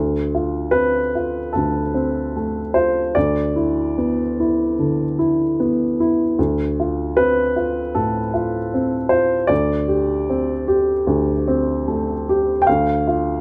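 Rubato around 75 BPM in 4/4, this reflective, wistful neoclassical minimalist excerpt features a solo upright piano, woody and up front, ranging from D2 to G5 through chords such as F/D, Bmadd11/D, Dm7 and Am7/D before closing on N.C. at 12.7 seconds, all set in a moderate studio reverb.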